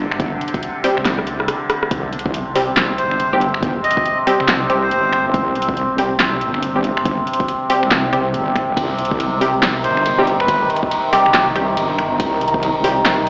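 Cavernous and heavy, this deep dubstep excerpt moves with a swung half-time feel as an up-front drone of shifting, resonant overtones holds sustained chords over a saturated, wobbling sawtooth bass, while a tape-warm drum kit with a fat snare, metallic hats, rim clicks, snaps, claps and ride sits forward alongside a deep electronic kick, with a drum fill at 1.1 seconds. Muted, detuned dub chord stabs with filter plucks and dub echo decay in the background from 0.8 seconds, and a reedy, breathy melodica with its own dub echo enters at 3.0 seconds and returns at 9.8 seconds. The whole mix sits in a moderate, huge ambient reverb and has the sound of a big sound system in a bare room, filtered through an AM radio tone.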